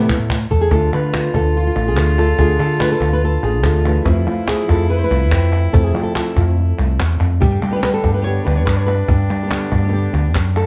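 A warm, fingerpicked flamenco guitar sits up front with the melody in this passionate, fiery flamenco excerpt cut from a longer piece. Beneath it, a woody fretless electric bass with a dark, growly, hollow-body tone sits forward, round and punchy. A snappy, close and dry cajon with snares and crisp palmas hand claps keep a straight four-beat feel, opening with a brief drum fill before 0.7 seconds. From that point a second acoustic flamenco guitar adds thumb-plucked stabs, finger squeak included, and a single bowed cello enters on a second line, played sul tasto with a soft attack and a pure, floating, smooth top. The harmony moves from Asus2 to Dm, then to F at 4.1 seconds and G at 7.4 seconds, and a moderate studio reverb places the ensemble further back in the room.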